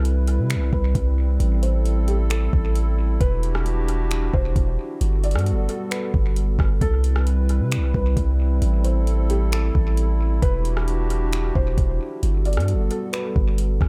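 A deep, sine-toned 808-style bass sits up front throughout this blissful, dreamy excerpt of atmospheric cloud-rap, moving at 133 BPM in a half-time 4/4 feel in C lydian over a looping Cmaj7, Am7, Em9, Gmaj9 progression. A moody, detuned analog pad with chorus and sidechain pumping holds sustained chords beneath a soft, felt-muted upright piano melody whose action noise is audible and whose notes carry an analog delay. A smooth, electronic R&B kit of finger snaps, metallic hi-hat, soft kick and rim click enters at 0.1 seconds, up front with a small-room character, while the whole mix is bathed in echo-heavy digital ambience.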